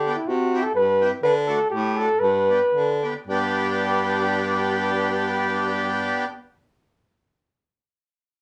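A mellow flugelhorn carries the melody with a smooth top from the start, over a punchy baritone saxophone bass with vibrato and an accordion that joins at 0.1 s with reedy, full chords through C, D and G. This bouncy, festive alpine folk dance band excerpt moves in 2/4 at 108-126 BPM in G major, tuned to A4 = 436 Hz, and slows between 1.2 and 3.3 s before a second section begins at 3.3 s. Light reverb gives the small group a small-room ambience.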